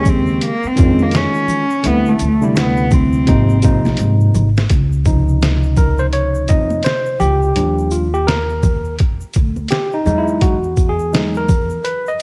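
A loping 84 BPM groove in 4/4 with a 16th-note swing drives this smooth, cool jazz-hop excerpt, built on a gritty, pitched-down sampler-style drum kit with a thumpy kick, medium-tuned snare, hi-hat and shaker sitting up front. Beneath it, a woody, dark pizzicato upright bass anchors the low end, while bright congas and egg shaker tap away in the background, close and dry. A cello carries the melody for the first 4.0 seconds, bowed sul tasto by one player with light vibrato and an airy, nasal, boxy tone that feels intimate and close. After a drum fill, the key settles into Db major at 4.7 seconds, and the worn, slightly out-of-tune tine electric piano, which has been comping on lush sus4 and ninth chords, steps into a solo that runs to the end. Studio reverb and a home-cassette sheen, complete with lossy compression artefacts, give the whole track a hazy, lo-fi patina.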